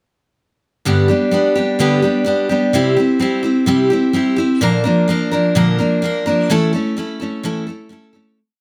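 A moderate studio ambience surrounds a full-bodied jumbo steel-string acoustic guitar, placed up front with audible finger squeak, playing alone from 0.9 to 8.4 seconds in this short, nostalgic and hopeful rock pre-chorus at 127 BPM. It strums straight eighths in open chord shapes, moving through G, C and B-flat before settling on A. The piece fades out over its last two seconds, beginning at 6.5 seconds.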